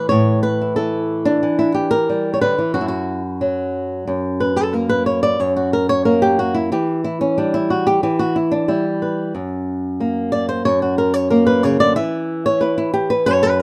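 A lone fingerpicked flamenco guitar opens this passionate, intense fragment of a longer piece, its dark acoustic tone sitting up front in a lightly reverberant room as it moves from A to E minor before a brief chordless stretch. At 4.1 seconds the guitar launches into a soloing passage that shifts between F# and E minor through to 13.6 seconds, with small finger squeaks adding a close, human texture to the fiery playing.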